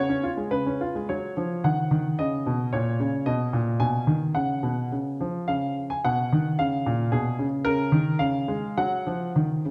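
A clear, natural baby grand piano plays alone from start to finish in this cheerful, graceful classical-period sonatina fragment, its short-sustained tone sitting up front in the mix and reaching from A#2 to G#5. In 2/4 with a rubato feel, the brief opening gives way at 1.1 seconds to a longer passage that moves through major and minor harmonies, passing through a chordless moment at 5.5 seconds before settling back home near the close. A recital hall reverb with a 1.5-second decay wraps the dark, warm production.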